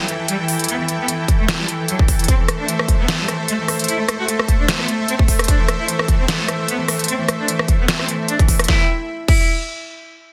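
A punchy, up-front electronic kick enters at 1.3 s to anchor this menacing, aggressive heavy wobble dubstep passage, cut from a longer piece, where a swung half-time kit of deep snare, crisp hats, rim clicks and crash cymbals sits up front in studio reverb ahead of a distant, bowed solo cello melody with vibrato and delay, over a lush, detuned supersaw pad that holds sustained chords moving from Em to Am and back with gritty 12-bit sampler texture and sidechain pumping, all in a dense, heavily limited modern master.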